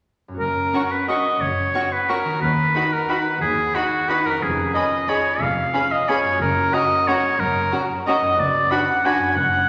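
A lilting three-in-a-bar pulse with uneven beats and rubato gives this excerpt of a festive, elegant orchestral ballroom waltz its sway, as mellow, ringing fingerpicked harp arpeggios enter at 0.3 seconds beside a clear, up-front solo oboe carrying a second line with light vibrato. Bowed string sections join underneath, with a focused cello section and soft-attack double basses with portamento holding the bass. A smooth, even violin section sings the high melody over a distant, lush second violin line and expressive violas with portamento, all bathed in the generous reverb of a scoring stage.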